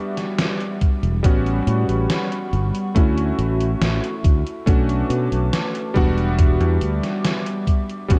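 Vaporwave with a faded, nostalgic mood, this short cut from a longer piece moves through Em7, A13, Dmaj9 and Bm7 before returning to Em7. An electric grand piano sits up front in the accompaniment, its chorused unisons and clangy low end touched by tape echo. Behind it, a detuned, wave-folded pad with a slow attack holds warbling, lo-fi sustained chords in its own reverb. A gated 80s drum machine enters at 0.2 seconds with hi-hat and a gated-reverb snare, its 12-bit sampler grit re-recorded in a large room. A thumpy electronic kick lands up front at 0.8 seconds, and a growly, punchy fingered electric bass follows at 1.0 seconds, while the overall production stays dark and cassette-toned in a mostly dry space.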